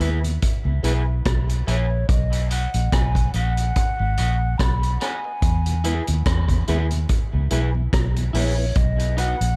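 Dub reggae with a laid-back, spacious mood and a swung sixteenth-note feel, heard as a short cut from a longer piece. A vintage drum kit sits up front with a punchy kick, rim clicks and hi-hat, its top end rolled off. Beside it, a foam-muted fingered electric bass lays down a dark, round line that carries the most weight in the mix. A slightly broken-up electric guitar adds twangy, picked accompaniment through a high-pass filter and dub echo, while a clean tonewheel organ with key click and a slow rotary speaker murmurs in the background. At 1.7 seconds an airy, hollow concert flute enters with a soft-attack, straight-tone melody, trailed by dub echo. A filter sweep runs through the opening until 5.4 seconds, and light reverb gives the whole a small-room ambience.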